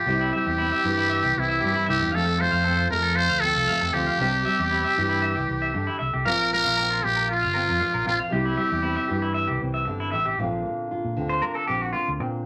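A short highlife excerpt cut from a longer piece, it sits in a studio reverb with a short, wet tail and a joyful, carefree mood at 116 BPM in straight 4/4, tuned slightly below standard pitch. Up front, a trumpet with a metal mute carries the melody in a buzzy, raspy, growling jazz style with light vibrato, close-miked and thin yet brilliant, until it drops out at 9.3 seconds. Beneath it, a nylon-string guitar plays thumb-plucked classical accompaniment with fresh strings, while a clean electric guitar picks twangy arpeggios in a higher register. A fingered electric bass adds a dark, round, punchy low end under chords moving through C, F, C and Bbsus2. At 10.4 seconds the harmony shifts to Bbadd9 and the clean electric guitar takes a short solo to close out the excerpt.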